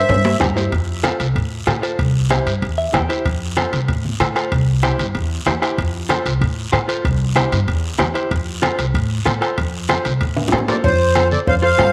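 Cumbia at a brisk 190 BPM in F major, festive and made for dancing, carried by woody, growly pizzicato upright bass beneath a steady bed of ringing cowbell and timbales, damped low-tuned congas, raspy guiro and a soft-beater bombo. A direct-recorded clean electric guitar enters at 0.4 seconds with picked, compressed accompaniment and short fills, while drum fills open the piece and mark the turn into a new section near 10.8 seconds. The reedy, sweet accordion melody, sitting up front with a light tremolo tuning and tape echo, appears only briefly at the start together with a mellow, breathy clarinet second line, and both return at 10.7 seconds, all set in a moderate echo-chamber reverb.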